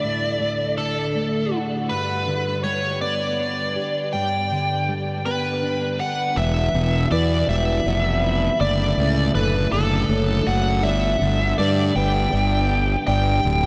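A biting, overdriven lead guitar carries the melody from the start, its picked lines soaked in tape echo and floating high over a euphoric, soaring post-rock excerpt. Beneath it, a bright, twangy twelve-string electric guitar spins clean, compressed arpeggios up front, shimmering with ensemble chorus and its own tape echo. At 6.4 seconds a round, dark fuzz bass enters, fingered and amped with overdrive, while a soft, felt-muted upright piano adds intimate arpeggios in the background, its action noise audible through subtle chorus and echo. The pulse moves slowly at 54 BPM in a straight 6/8, with the harmony shifting from D and G to Em, D/F# and G. A huge ambient reverb drenches the whole mix in a dreamy haze until the cut at 13.7 seconds.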